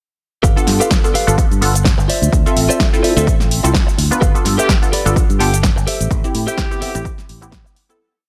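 This joyful, funky piece of filtered disco house begins at 0.4 s in G mixolydian at 127 BPM, with a lightly swung 16th-note feel. A dry, overdriven four-on-the-floor kick and a punchy analog drum machine carry shaker, open and closed hats and a snare backbeat, while a fingered electric bass plays a warm, syncopated line. A bright, clean, direct-recorded electric guitar picks a compressed funk chord riff in close voicing, joined just after by a detuned sawtooth-and-square polysynth that comps rhythmic rootless chords through chorus, phaser and gritty 12-bit sampler colour. The guitar, bass, synth, horns and the drum machine's hats and percussion all pump against the sidechain, and the whole track sits in light reverb over a G9, Dm9, G9 and Am7 progression. A close-miked pop horn section adds short phrases on G4 from 4.6 s, and the track fades out from 5.5 s.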